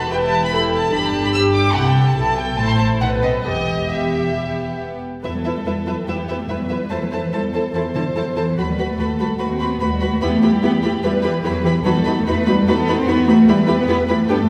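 Restless and urgent, this quick classical-period movement for string orchestra in E minor runs at 145 BPM in 4/4 with a rubato feel and tuning at A4 = 445 Hz, as a dark, vibrato-rich violin section carries the melody over a pure, floating second violin line, intimate viola accompaniment, a prominent warm cello section and woody double basses, every section bowed sul tasto with close-miked tone, all but the basses with a soft attack, and bathed in a wet hall reverb, shifting into a new section at 5.2 seconds.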